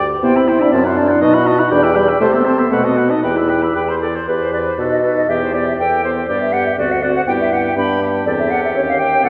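A pure, crisp-attacked silver flute carries the melody of this graceful, cheerful classical-period wind quintet movement in E minor at a quick 121 BPM in 2/4, over a lightly vibrato oboe second line, a dark clarinet sitting in the background, a warm French horn entering at 0.2 s, and a smooth, mellow bassoon bass set up front, all heard from further back in a reverberant concert hall.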